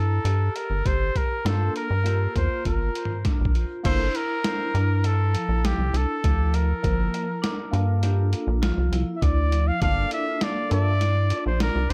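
Driving in a straight 5/4 at 100 BPM, this tense progressive instrumental in G dorian sets a rubbery, nasal square bass up front beneath a muffled, overdriven sampler-style drum kit that fills from 2.6 to 3.8 s, while a trumpet with light vibrato carries the classical-style melody through analog delay, a metallic vibraphone plays arpeggios in the background, a barky electric piano with phaser adds accompaniment, and a second, band-limited vibraphone with fast motor vibrato joins at 3.9 s, within a dry, echo-heavy mix.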